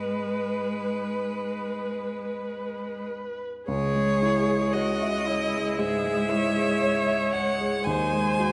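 In a rubato 4/4, this solemn, elegiac slow romantic movement for piano quartet sets a smooth, up-front violin melody with light vibrato over an intense, bright cello second line, a rich, distant viola whose soft-attack accompaniment bends with expressive portamento, and a warm, polished grand piano with long sustain, all carried by a moderate concert hall reverb as the harmony shifts to a new chord at 3.7 s in this fragment cut from a longer piece.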